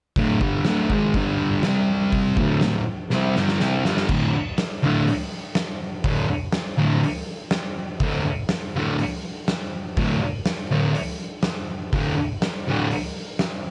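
From 0.2 s, a thick fuzz guitar and an oversized, low-tuned drum kit hit together in a raw, rowdy garage rock piece, cut from a longer performance at 122 BPM in a straight 4/4. The electric guitar is double-tracked and up front, its picked, distorted riff moving through D5, G5 and C5 chords. The acoustic kit sounds saturated and gritty, with a boomy kick, a fat snare, hi-hat and dark crash cymbals pumping in a big room. A drum fill starting at 3.1 s leads into a new section, and the guitar drops out at 12.9 s so the drums briefly carry on alone. A moderate club reverb and the grain of cassette tape give the whole performance a rough, live-in-the-room character.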